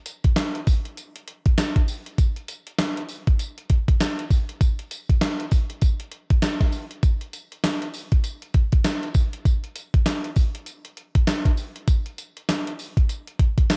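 A gated 80s digital drum machine opens at 0.1 s and carries this confident, slick R&B fragment alone through 13.8 s, its thumpy kick, gated-reverb snare, handclaps, hi-hat and tambourine riding a 99 BPM groove in 4/4 with a swung sixteenth-note feel. The sampler-style kit sounds overdriven, re-recorded in a small room, and sits up front in an otherwise dry, dark production.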